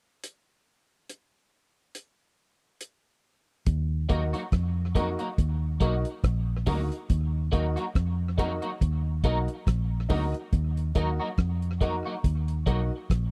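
Roots reggae at a slow 70 BPM in Eb harmonic minor, meditative and serious, opening on a cloth-damped, thuddy drum kit with a tight kick, hi-hat and rim click, dark and rolled-off, before a dark, round, foam-muted fingered electric bass enters on Ebm at 3.7 seconds. Moments later a bright, twangy electric guitar at the edge of break-up adds compressed, picked accompaniment through analog chorus and dub echo, alongside woody upright piano stabs with audible action noise and long sustain. Quiet, high-tuned bongos with hard hands appear from 5.0 to 10.3 seconds, all within a dry, close 1970s-style studio sound with small room ambience, in a clip cut from a longer piece.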